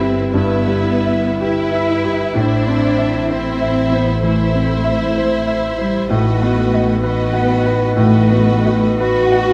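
A clear concert grand piano carries the melody up front, its deep bass and open tone ranging from G2 to F#5 in this brooding, tragic romantic movement for piano and orchestra. In 12/8 with a rubato feel at 54-66 BPM counted in dotted quarters, the music sits in E minor, moving from Em/G to Am at 2.4 seconds and on to B7/A at 6.1 seconds. A rich, lush violin section with focused vibrato shares the melody up high, while a second, shadowy violin section traces its own line in the background. Warm, bowed violas supply accompaniment and expressive cellos the bass, and the double basses add a soft-edged, warm low floor. A distant, roomy French horn section holds dark sustained chords behind the strings, captured with close, detailed microphones and light reverb across this 9.5-second fragment of a longer piece.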